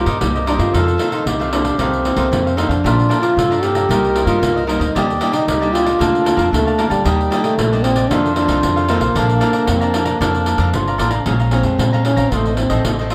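Bittersweet and nostalgic, this samba and choro excerpt moves at 114 BPM in Bb major, with a mellow, jazz-style trombone carrying the melody with light vibrato while a soft-attack, classical-style clarinet plays a second line until 11.2 seconds. A crisp, picked cavaquinho and a full-bodied, fingerpicked nylon-string guitar with audible finger squeak in the background fill out the accompaniment over a woody, growly pizzicato upright bass and a jingly pandeiro that sounds distant, as if in a large room. From 11.3 seconds the trombone takes a solo as the harmony shifts to Bbm7, the whole performance set in light reverb.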